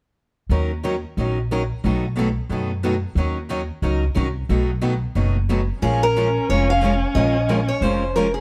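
A dark, warm production with light reverb frames this swinging, bittersweet excerpt of acoustic string swing in the jazz manouche style, cut from a longer piece. From 0.5 seconds, two picked steel-string acoustic guitars carry the accompaniment: one bright with a concert body, the other a boxy parlour guitar on fresh strings, both showing finger squeak. Beneath them, an up-front pizzicato upright bass gives a woody, thumpy pulse as the harmony alternates between Ebm7 and B7. At 5.8 seconds the music moves to Bbm7, and a picked archtop guitar enters up front with the melody, its bright, boxy tone treated with plate reverb and analog delay. At the same moment, a single distant bowed violin adds an expressive second line, colored by vibrato and portamento.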